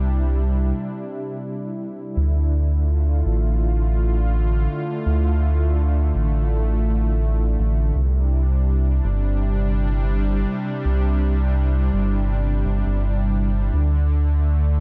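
Hazy and meditative, this ambient dub fragment moves at 83 BPM in D minor with a gently swung sixteenth-note feel, shifting from C to D minor and back toward C before settling on a bare D5. A smooth, detuned analog pad holds sustained chords with a soft attack, its chorus and tremolo lending a bright shimmer, while a round, deep analog bass sits up front with a dark, evolving tone and tube-saturated body. The opening seconds carry a filter sweep and a break before the groove settles in at 2.2 seconds, all in a dry space.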